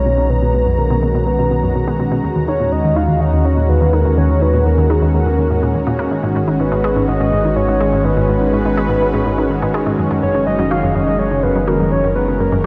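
A straight 4/4 pulse drives this cosmic, mysterious stretch of ambient, sequencer-driven space music, cut from a longer piece and steeped in a dreamy hall reverb. A thick, detuned unison pad sits up front holding sustained chords, while a deep sine sub bass anchors the low end and a nasal, wave-folded analog pluck plays a bright riff through chorus and tape echo. Among them floats a soft, round octave-layered lead with vibrato and a dark, triangle-based tone, its melody also carried on chorus and tape echo.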